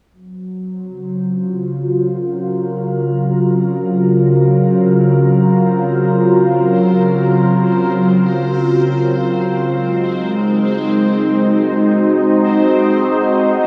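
Drenched in a huge, long-tailed reverb with a cassette-tape grain, this expansive, cosmic space-music excerpt floats in free time in Gb lydian, where a swirling, detuned sawtooth pad with phaser, chorus and shimmer sits up front holding sustained Gbmaj7 chords that move to Ab7 at 9.7 seconds, while a quieter, resonant stepped-filter texture bubbles alongside through random filter steps and fades in from 0.1 seconds.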